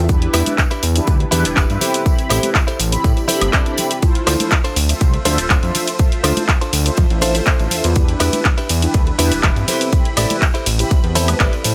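A fat, detuned analog bass pumps up front through this funky, groovy 122 BPM filtered disco house excerpt in D dorian, joined by a punchy electronic kick, a layered house kit with bright hats, handclaps, cabasa, ride and woodblock, dry tambourine and congas in the background, a dark, round synth brass with chorus and phaser, a bright, scooped clean guitar riff with 12-bit sampler grit that plays a fill at 10.9 s, and a background swell at 3.2 s, all over Em7, Am7 and Dm7 chords.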